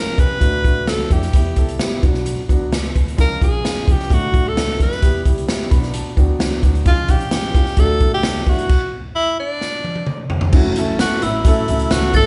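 Driven by a swinging big-band drum kit at 130 BPM in a straight 4/4, this joyful, uptempo 1960s-style soul cut features a punchy kick, a medium-tuned snare, dark cymbals, hi-hat and toms sitting up front in an airy hall sound. A breathy tenor saxophone carries the melody with light vibrato and scooped notes, jazz-styled and present, while a woody upright piano supplies the accompaniment, stepping out with a fill from 5.5 to 6.9 seconds. Underneath, a pizzicato upright bass with steel strings sits in the background, and low-tuned, thick-skinned congas add a very quiet, close layer of percussion. The band cycles through D, Em, Bm and C# before a stop lands at 8.7 seconds, with a drum fill from 9.6 seconds leading into a new section on F#m7 at 10.5 seconds. There a sparkling, bell-like glockenspiel struck with brass mallets joins as a second line at 11.0 seconds, its ringing metallic tone set back behind the saxophone, all captured as a live band in one room with a moderate large studio reverb and a soft, rolled-off top end.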